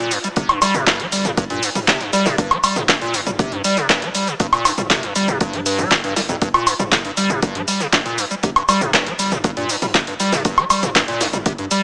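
Heard through a small-speaker sound wrapped in a lush hall reverb, this raw, gritty acid house fragment runs in a straight 4/4 groove, cut from a longer piece. Up front, a squelchy, resonant liquid acid bass carries the riff from the first second, its square-wave tone shaped by a filter sweep, analog chorus and tape echo. A punchy analog drum machine sits just as forward, tape-warm and re-recorded in a small room, contributing cabasa, handclaps, hi-hat, toms and woodblock. An electronic kick drum with a similar tape-warm analog punch enters at 0.4 seconds, while a very quiet acoustic studio kit adds hi-hat and a medium-tuned snare. Beneath it all, in the background, a deep, dark, round analog bass holds sustained low notes with sidechain pumping.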